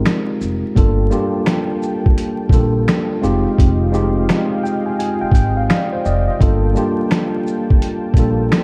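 A worn, slightly out-of-tune tine electric piano opens this reflective, hazy lo-fi hip hop excerpt at 0.0 seconds, lightly overdriven and cassette-tinged over Fm9 and Gm9 chords, soon joined by a gritty, pitched-down boom bap sampler kit with a thumpy kick, snare, hi-hat, snaps and shaker in a swung groove, a woody, growly pizzicato upright bass, and a faint, smooth, detuned sawtooth pad with chorus, while the piano plays a fill from 4.3 to 6.4 seconds amid dark production, light reverb and vinyl crackle.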